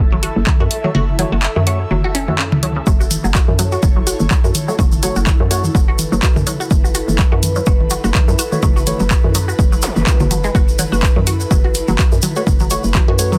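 A dense, heavily limited mix with light reverb frames this quirky, cool stretch of swung minimal techno: an overdriven, up-front kick drops out from 0.9 to 2.9 seconds, while a punchy analog drum machine supplies handclaps and hi-hat alongside tape-warm electronic toms and a grainy, bright tube shaker that enters at 2.9 seconds. A hollow, bouncy FM bass and an airy, breathy pad both carry sidechain pumping, a squelchy, resonant blip pluck riff runs through phaser and tape echo, and a very quiet flickering granular texture sits beneath. A nasal, dark organ stab appears in three passages steeped in lush chorus and dub echo, and a brief electronic zap sounds in the background at 9.8 seconds.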